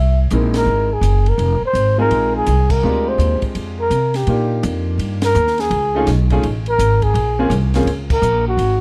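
A breathy, whispered flugelhorn leads this smoky, late-night small-group jazz excerpt, close-miked and up front, with vibrato, soft attacks and scooped notes. An upright bass sits up front beside it, its woody pizzicato tone anchoring a swinging 4/4 at 167 BPM. From 0.3 seconds a baby grand piano with an open, long-sustaining tone plays accompaniment over a progression that runs from C7alt through Fm7, Bb13 and Ebmaj9 to F7alt and Bbm9. A compact cocktail drum kit sits low in the mix, its punchy kick, high-tuned snare, hi-hat, and dark ride and crash cymbals driving the swing, while band accents punctuate the phrase. The production is warm and dark, with little reverb, keeping the ensemble close and intimate.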